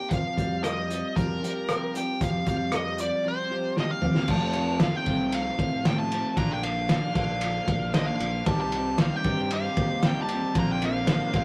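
Wistful and reflective, this short excerpt of folk rock and heartland rock moves at 115 BPM in a straight 4/4, with a nasal, dark lead guitar carrying the melody up front through a parked wah and overdrive over a thuddy, cloth-damped drum kit with a fat snare, tight kick, gritty saturation and a muffled, rolled-off top. A picked steel-string dreadnought acoustic with finger squeak and a bright, twangy, slightly broken-up electric riff through a small old amp sit in the background, a fingered electric bass holds the low end, and after a drum fill at 3.8 seconds a sweet, reedy accordion with light tremolo tuning adds sustained chords from 8.5 seconds. It sounds like a rough rehearsal-room recording, with moderate small room reverb.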